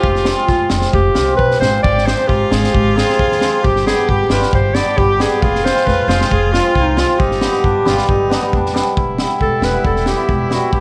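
From the first moment, a bittersweet yet festive klezmer tune in G phrygian dominant moves at 135 BPM in straight 4/4, with a smooth-topped, classically styled clarinet carrying the melody through tape echo while a mellow, vintage-toned harmonica adds a softer jazz-inflected second line with light vibrato and scooped notes. Beneath them, a hammered cimbalom rings and shimmers, a woody, dark pizzicato upright bass anchors the low end, and a crunchy, gritty breakbeat kit sits up front with a tight kick, a high-tuned snare, a saturated small-room sound and a rolled-off top. Light reverb wraps the ensemble as the harmony cycles through Fm, Ab and G before turning to Em at 9.0 seconds, where this fragment of a longer piece ends at 10.8 seconds.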